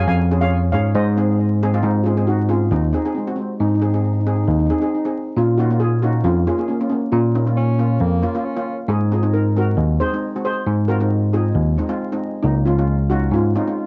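A home cassette recording with vinyl crackle and light reverb gives this sunny, carefree calypso excerpt a worn, homespun glow. At 136 BPM in a straight 4/4, a double seconds steel pan played with medium rubber sticks carries the melody, its metallic shimmer set in a boxy small room and colored by cassette tape and tape echo. Beneath it, cello pans struck with the same medium rubber sticks supply shimmering accompaniment through cassette tape and plate reverb. The bass line comes from a bell-like tine electric piano, bright, clean and up front, sitting well above the pans in level. Briefly, from 7.6 to 8.8 seconds, a breathy alto saxophone adds a mellow second line with light vibrato, scooped notes and a smooth, pop-style top, treated with cassette tape and plate reverb. The harmony moves from Db/F through Ab and Bbm to Abadd9 before settling on Db.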